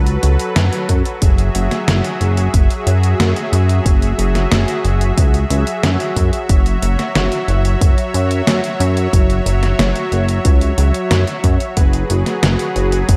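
A glossy, up-front chorused synth bass with tube saturation and a plucky pulse-and-sawtooth tone drives this moody 91 BPM synthwave excerpt, beneath a smooth, evolving soft supersaw holding sustained chords that pump with sidechain over a steady F# pedal, while a detuned 8-bit drum machine adds an overdriven, slapback-echoed hi-hat and fat snare, a punchy layered electronic kick joins at 0.9 seconds, and a lush hall reverb lends a big arena sound.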